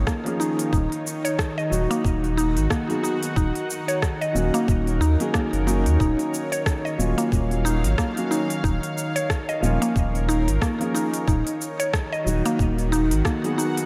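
A felt-muted upright piano, a bowed-like drone and a round analog bass open this mystical organic downtempo passage together at 0.0 seconds, cut from a longer piece and moving at 91 BPM in 4/4 with a gentle 16th-note swing. The piano plays soft, intimate accompaniment with audible action noise and a boxy, thin-felt tone, darkened by a low-pass filter and trailed by delay. Alongside it, the drone holds tense, string-like sustained chords with a slow attack, vibrato and its own built-in reverb. The deep, dark bass sits up front, and together with the piano and drone it breathes with sidechain pumping. A woody, mallet-like synth pluck spins chorused arpeggios with delay, while a tight, tape-warm electronic kick and an organic electronic kit of crisp hi-hat, cabasa and rim click drive the groove. The harmony circles from Bbm/Eb through B/D#, Gb/Eb and Ebm7, and the whole mix floats in a lush hall reverb for a dreamy, enveloping sound.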